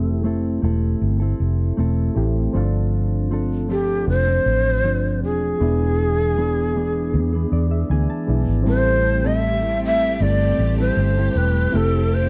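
A straight, unhurried 4/4 pulse at 78 BPM carries this mellow, wistful indie pop piece in A minor, cut from a longer work. A breathy, bright shakuhachi leads the melody up front, its expressive vibrato framed by lush chorus and a slapback echo. Underneath, a round, punchy muted electric bass anchors the low end, while a dark, compressed electric guitar adds clean fingered accompaniment with a subtle chorus and warbly pitch drift. Soft electric-piano-like synth keys sit in the background with a gentle, tape-worn character and step forward with a fill at 7.1 seconds. At 8.7 seconds a swirling, phased string machine enters with sustained chords as the harmony moves from Fmaj7, G9sus4 and E7 to Am7, all captured in a dry, close 1970s-style studio sound.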